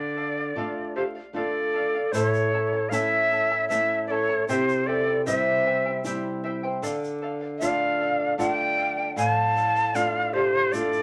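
An airy, close-miked quena leads this short cut from a longer Andean folk piece in D minor, its tongued melody carried with expressive vibrato at 77 BPM in a straight 3/4 that feels both festive and wistful. A shimmering, fingerpicked charango with double strings and a fingerpicked flamenco guitar accompany from the start, while hollow, breathy pan pipes add a distant second line from 1.0 s with audible chiff. A grainy, bright tube shaker joins at 2.1 s as the harmony moves through Dm, A and C, all set in a moderate club reverb with vinyl crackle and a faint mains hum.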